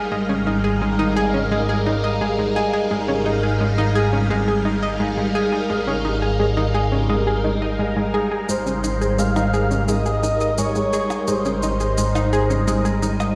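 A swirling, warbling phased string machine holds a bright Abmaj7 chord from the start, alongside a round, sawtooth-edged analog pluck riff with chorus and delay and a fat, detuned bass, opening an expansive, luminous piece of ambient, sequencer-driven space music at 86 BPM in Ab major. At 8.5 seconds a breathy, flute-like synth lead enters with a soft melody, while a faint shaker and electronic percussion blips, touched with delay, join beneath it. The passage, cut from a longer piece, sits in a wet concert-hall reverb and sounds as if played on a big sound system in a bare stone room.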